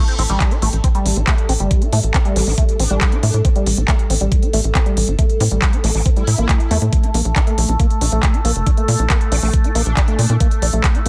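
A dense, heavily limited and nearly dry mix opens this intense, driving psychedelic trance excerpt, where a knocking electronic kick and a tight, punchy sequencer bass sit up front beneath a techno kit of handclaps and smooth hi-hats, while a squelchy, resonant acid bass riff with a filter sweep and tape echo runs throughout over a chorused drone of moving overtones, and from 2.4 s a nasal, formant-filtered wobble bass adds a faint second line in the background.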